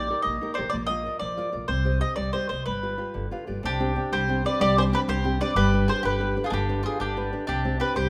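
A moderate recital-hall reverb surrounds this short cut from a longer Italian folk serenade, giving the acoustic players an open, airy space. In a straight 6/8, the music feels passionate and romantic, with a picked mandolin carrying the melody up front, its doubled strings sounding woody and close. A bright, fingerpicked nylon-string guitar supplies classical accompaniment, with the odd finger squeak, and slips in a short fill at 3.1 seconds. The upright bass, played pizzicato on steel strings, also sits forward with a dark tone. From 3.7 seconds, as a new section begins, a second mandolin adds a quieter, mellow and round line alongside the lead.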